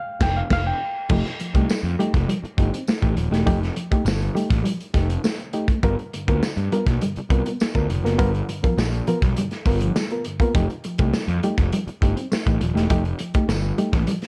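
A gritty, saturated breakbeat drum kit sits up front with punchy kick and dark cymbals, driving a strutting funk groove at 102 BPM alongside an overdriven, fuzz-toned picked electric bass. This excerpt opens with a band accent and a brief solo of reedy, worn, slightly out-of-tune electric piano stabs. At 1.1 seconds a dark, clean electric guitar riff with tremolo enters in the background, joined by a faint, jingly tambourine as the harmony moves between F9 and G7#9 in a dark production with light reverb.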